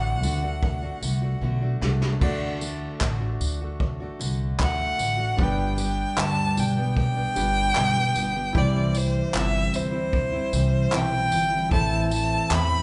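Acoustic pop with a carefree, sunny mood, moving at an unhurried 76 BPM in G major. A close, smooth bowed violin carries the melody up front with vibrato, over a full-bodied picked jumbo steel-string guitar with audible finger squeak, a woody pizzicato upright bass, and an intimate grand piano tucked in the background with its action noise audible. A roomy, distant brush kit with dark cymbals, a punchy kick, snare, tambourine, handclaps and crash plays a fill from 1.4 to 2.2 seconds, and the band, heard live in one large room with moderate reverb and a rolled-off top, lands on G at 5.4 seconds before moving through C to Am.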